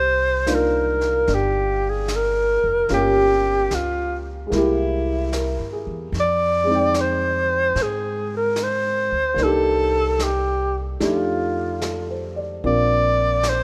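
A rough home demo with light reverb and a small-room ambience frames this wistful, melancholic jazz ballad in C minor, cut from a longer piece and swinging gently at 74 BPM. Up front, a mellow alto saxophone carries the melody with vibrato and scooped notes over a woody pizzicato upright bass, while a warm baby grand piano and a soft, rolled-off brush kit join at 0.5 seconds. The chords open on Cm11 and settle on Bbadd9 near the close.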